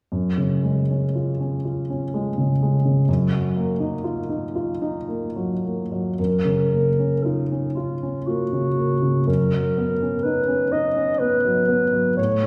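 Classical impressionist music for clarinet and grand piano, this pastoral, dreamy passage moves in a rubato 3/4 at roughly 52-64 BPM in F# major, tuned to A4 = 436 Hz, and is cut from a longer piece. The grand piano opens alone at 0.1 seconds with an intimate, natural accompaniment, its action noise audible up close, moving from F#sus2 to D#madd9/F#. At 6.2 seconds the clarinet enters with the solo melody, its dusky, classical tone sitting up front yet carrying a distant, roomy quality. Beneath it the harmony shifts through F#maj7 and Bmaj9/F# as both instruments continue to the close at 12.5 seconds. The recording places the duo in a church or concert hall, wrapped in a lush reverb that lingers for about 1.6 seconds.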